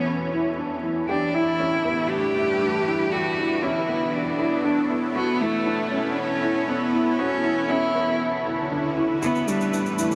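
Hypnotic and melancholic, this piano and strings electronica fragment, cut from a longer piece, sets a clear, bowed cello melody with vibrato, softened by a low-pass filter and diffuse ambient delay, over a lush, detuned sawtooth unison pad treated with chorus and phaser. A soft, felt-muted upright piano plays an intimate riff with audible action noise. Near the close, a very quiet electronic swell and riser arrives at 8.4 seconds and an electronic shaker, re-recorded in a large room, enters at 9.2 seconds, all within a dreamy mix soaked in huge ambient reverb.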